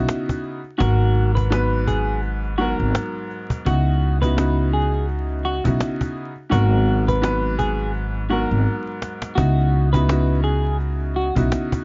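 A woody, up-front pizzicato upright bass anchors this gritty, reflective boom-bap hip-hop excerpt, joined by a slightly detuned, boxy upright piano playing minor-ninth and eleventh chords, a snappy, close and dry cajon with a fill at 8.7 seconds, and a clean, chorus-tinged semi-hollow electric guitar melody entering at 0.8 seconds, all over a swung groove in a dark production with vinyl crackle and little reverb.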